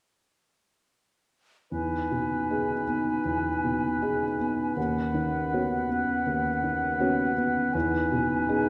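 Hopeful and uplifting, this short cut from a longer cinematic film score moves at a rubato 80 BPM in E major, where a soft, intimate felt-muted upright piano sits up front with the accompaniment while a hollow, airy concert flute with vibrato, a distant oboe with light vibrato and a mellow clarinet in the background carry the second lines from 1.7 to 8.7 seconds over Emaj7 and Badd9/D#, all heard from further back in a wet scoring-stage reverb.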